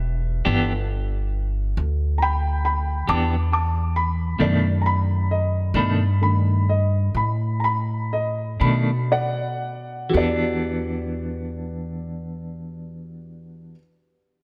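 A dreamy mix soaked in a moderate plate reverb gives this short slice of a longer piece a hazy, lingering atmosphere. It is a soulful, mournful slow blues in 12/8 with a straight feel, moving at roughly 38-46 dotted-quarter beats per minute in E minor, tuned slightly sharp to A4 = 441 Hz. Up front, a dark grand piano with a mellow, boxy tone and short sustain takes a solo over the opening 10.1 seconds, and the tempo slows from 2.6 seconds onward. An upright bass plucked pizzicato on steel strings supplies a woody, growly low end. A clean electric guitar enters at 0.5 seconds, picked with a twangy, warm edge and colored by tremolo. The harmony moves from Em7 to a tense B7#9 and settles back on Em7 as a new section opens at 10.1 seconds.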